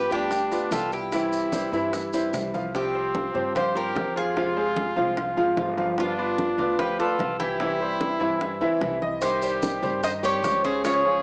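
This home cassette recording has a small-speaker sound and a moderate spring reverb, and the tres, trumpet, flamenco guitar and piano carry a cassette-tape tone. It is a sultry, warm slice of Cuban son and guajira in 4/4 at 148 BPM with a straight feel, cut from a longer piece. The mellow, metallic tres carries the melody with picked double strings, some of them octave-doubled. A bright trumpet with light vibrato sings a present, pop-style second line, while brilliant baby grand piano arpeggios ring with long sustain through a tape echo. Behind them, a fingerpicked flamenco guitar and a woody, thumpy gut-string upright bass fill in the harmony over chords moving from G7 and C to Fm and Cm. Very quiet, ringing congas played with hard hands sit close and dry, and round, low-tuned bongos stay in the background, while grainy, distant maracas drop out at 2.7 seconds and return at 9.2 seconds.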